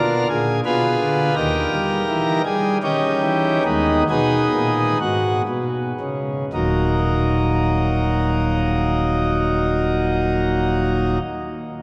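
A pipe organ's principal chorus, full and up front with a baroque voicing, plays alone in this grave, solemn chorale-style classical excerpt in 3/4 with a rubato feel, slowing from 0.3 to 6.5 seconds as the harmony moves from Bb7 through Eb7 and Abm/Eb to settle on Ebm, all bathed in a long, wet cathedral reverb until the organ stops at 11.2 seconds.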